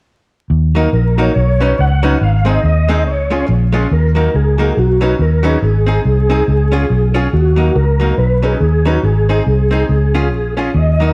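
Ska in Eb minor at 140 BPM, swung on the eighths, with a mischievous, driving mood in this short cut from a longer piece. A muted, fingered electric bass sits up front from 0.5 seconds, round and punchy with a dark, amped tone, while a clean, compressed hollow-body archtop guitar adds dark picked accompaniment from 0.8 seconds. A woody upright piano with long sustain places stabs in the background, touched with slapback echo. The melody comes from a soft, flute-like tonewheel organ, colored by chorus vibrato, a slow rotary speaker and slapback echo. The chords cycle through Ebm, Badd9, Ab and Db, and the whole passage carries light digital reverb and a layer of vinyl crackle.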